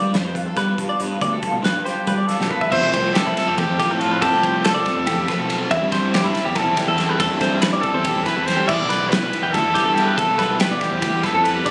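A quick, straight 7/8 pulse at 281 BPM counted in eighths drives this bright, playful math rock and midwest emo passage, cut from a longer piece. A loose indie drum kit with a punchy kick, fat snare and dark cymbals sounds gritty and saturated in a pumping room, and a drum fill leads out of the opening into the main section. Beneath it, a round fuzz picked electric bass adds overdriven weight, while a clean, compressed twelve-string electric guitar plays arpeggios high above throughout. A dark, lo-fi electric guitar through a small old amp, slightly broken-up and treated with ensemble chorus, plays accompaniment at first and then gives way at 2.7 seconds to a crunchy, double-tracked overdriven guitar riff tucked in the background. A clear, vintage-toned trumpet with scooped notes and slapback echo carries the pop-style melody from 1.8 seconds, pauses, and returns at 7.8 seconds over chords moving from G7 through Fmaj9 and Cmaj7 to Em7. 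The whole mix has the close, light-reverb feel of a phone recording made in the room.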